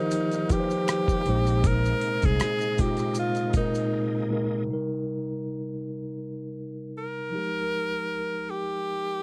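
The bright tenor saxophone carries the melody up front with close-miked vibrato in a soulful, sensual neo-soul and R&B setting, with a gently swung sixteenth-note feel. Beside it a mellow tine electric piano plays clean accompaniment through built-in speakers, while a full, shouting tonewheel organ sits in the background with light overdrive, chorus vibrato and a fast rotary speaker, holding sustained chords until about 4.6 seconds. A gritty, compressed sampler-style drum kit with a thumpy kick, hi-hat and rim click runs from 0.1 to 3.9 seconds, joined by maracas and finger snaps set back in the mix. A dark, round, foam-muted electric bass adds a brief punchy line between 1.3 and 2.4 seconds. After a silent gap the second section brings the saxophone and electric piano forward alone over Cm7 and Fm11 harmonies, all captured in a dry, close 1970s-style studio sound, as an excerpt cut from a longer piece.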